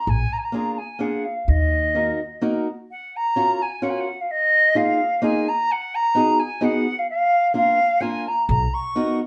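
In steady 3/4 at 128 BPM, this bittersweet, whirling musette waltz sets a pure, vibrato-rich silver concert flute melody with a crisp attack, slapback echo and plate reverb over boxy fingerpicked swing-style acoustic guitar from 0.5 s and a woody, growly pizzicato upright bass that stops at 2.1 s and returns briefly at 8.5 s, the trio heard from further back in a small, wet room.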